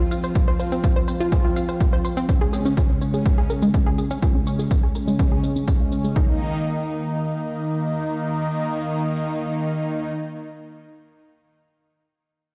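This short cut from a longer melodic techno track sounds like it is booming through a big sound system in a bare stone room, with a moderate concert-hall reverb adding a digital sheen. At 124 BPM in a straight 4/4, the mood is melancholic and dramatic, moving over chords of F5, then Db5 at 2.3 seconds and Eb5 at 6.2 seconds. A punchy, up-front electronic kick drum and a quiet, layered shaker, both re-recorded in a small room, drive the first stretch before stopping around 6.3 seconds. A round, full-bodied analog pluck plays detuned sawtooth arpeggios with a fast attack and short decay, while a bold, brassy analog pad delivers airy, sustained stabs with a soft attack, vibrato and a moving notch. Both synths carry chorus, digital delay and sidechain pumping, and each gets a filter sweep through the opening section. After the pluck drops out, the pad carries on alone until about 10.1 seconds.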